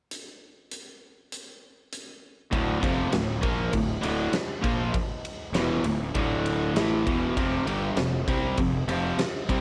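Hard rock with a menacing, driving feel, this excerpt opens on a huge arena drum kit alone, its fat snare, punchy kick and bright cymbals up front with a cassette-tape grit, until at 2.5 seconds a cranked stack guitar with overdrive and spring reverb charges in beside a hollow-body semi-hollow guitar in the background and a growly, fuzzed fingered bass, the guitars riffing over D minor before shifting to an F power chord at 7.4 seconds in a lightly reverberant home cassette recording.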